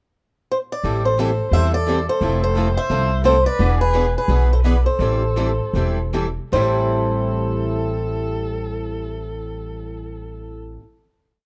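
Acoustic string swing in the jazz manouche style, this short bittersweet piece in A minor swings at 147-174 BPM, opening with a pickup bar where the bright, boxy lead guitar states a motif-based melody of call phrases, complete with finger squeak, before moving through Am7, Fmaj7 and E7 and slowing down from 3.6 to 6.5 seconds into a final held chord. Up front with the lead, a woody, thumpy gut-string upright bass plays a two-beat root-and-fifth pattern, while two parlour steel-string guitars supply rhythm: one playing four to the bar with short accents on two and four, the other, with fresh strings, sitting in the background. A distant, expressive bowed violin adds a harmony line mostly in thirds with vibrato and portamento, all within a light reverb.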